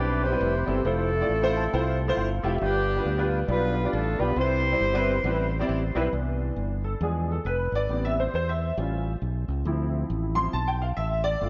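Jubilant and soulful, this uptempo gospel excerpt swings at 136 BPM in C major, tuned slightly flat to A4 = 438 Hz, moving through chords like Cmaj7, G7, E7b9 and Dm9. A mellow horn section carries the melody in octaves with vibrato and a smooth jazz-style top, touched by delay, until 5.7 seconds, while a grand piano with ensemble chorus fills at 1.3 seconds and a fingered electric bass sits direct and amped up front underneath. From 6.1 seconds the piano takes a solo over the bass, all of it soaked in a dreamy plate reverb with a soft, dark top end.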